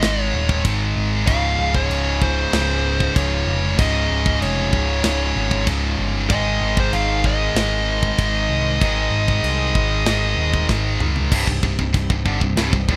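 This rough home demo mix of heavy metal sits in studio reverb and feels relentless and heavy, a fragment cut from a longer piece. Up front, an overdriven, growly, punchy electric bass carries the low end beneath a stack of picked riff guitars: one tight and distorted, another high-gain and heavy in the background, and a double-tracked, very quiet high-gain layer. Over them, a dark, distorted lead guitar plays the melody with tape echo until 10.7 seconds, when the tight metal kit of tight kick, medium-tuned snare, toms and bright crash cymbals plays a short drum fill. From 1.3 seconds, a pipe organ's nasal cornet solo stop holds very quiet sustained chords in a romantic voicing. At 11.3 seconds the double-tracked guitar stops as the harmony shifts to C minor for a brief closing section.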